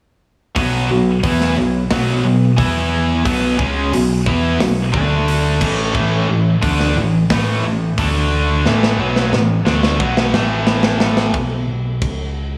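Driving and heavy, this hard rock fragment is built on a bright, double-tracked distorted guitar riff cycling through B5, E5, D5 and A5 power chords. An overdriven, round and punchy picked bass and a tight acoustic metal kit with a medium-tuned snare and rolled-off top play beneath it. A drum fill arrives at 8.6 s, the guitar drops out at 11.3 s, and the bass and drums carry on, the kit stopping at 12.2 s and the bass sounding alone to 12.6 s, all inside a big arena-like concert hall reverb.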